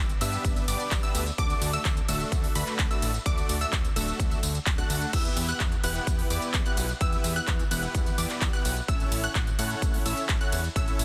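A dense, heavily limited modern master with little reverb carries this euphoric, anthemic stretch of festival progressive house, cut from a longer piece and sitting in the drop throughout. A punchy, up-front electronic kick leads the mix, while a big-room dance kit with crisp hats, handclaps, tambourine, ride and crash adds an overdriven edge. Underneath, a fat analog bass, detuned and thick with a filter sweep, pumps against the sidechain from the very start. A huge, airy supersaw riff, detuned with a sub octave and a noise layer, carries vibrato and tape echo, and a lush unison pluck plays high, decaying, wave-folded arpeggios with the same echo and pumping. The chords move from G to D, then to Em at 5.1 seconds and A at 8.9 seconds as the section repeats.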